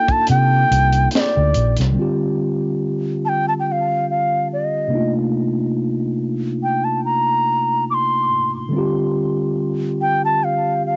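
An airy, close-miked bansuri carries the melody from D5 to D6 with vibrato and tongued notes, its tape echo trailing each phrase, in this soulful, smooth neo-soul R&B excerpt at 71 BPM in D phrygian with a light 16th-note swing. A mellow tine electric piano, clean and sounding through its built-in speakers with a cassette tape character, holds the accompaniment throughout, moving between Cm11 and Dm7. In the opening 2 seconds a tight funk drum kit with a high-tuned snare and hi-hat plays in a small room, while a dark, round, foam-muted fingered electric bass sits up front with a punchy, amped tone. The kick is muted from 0.3 seconds, and both drums and bass stop at 1.9 seconds, leaving the bansuri and electric piano to carry the rest of the excerpt to 11.0 seconds. The whole has the soft, dulled top of a home cassette recording with a light reverb.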